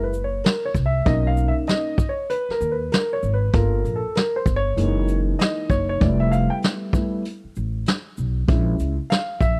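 Smoky and nocturnal, this short cut from a longer jazz-hop piece sits at 97 BPM in 4/4 with a swung sixteenth-note feel. A dark baby grand piano carries the harmony throughout, its mellow, smooth, vintage tone moving through rich chords such as F#7, Bmaj7, Gm7 and Fmaj9#11. Underneath, an upright bass plucked on steel strings gives a woody, growly low end, sitting slightly louder than the piano. A vintage brush drum kit enters at 0.1 seconds with hi-hat, shaker, a medium-tuned snare and a punchy kick, its brushed sound rounded with a rolled-off top in a small room. The dry, close recording has a 1970s studio character, with all three parts placed up front for an intimate, late-night atmosphere.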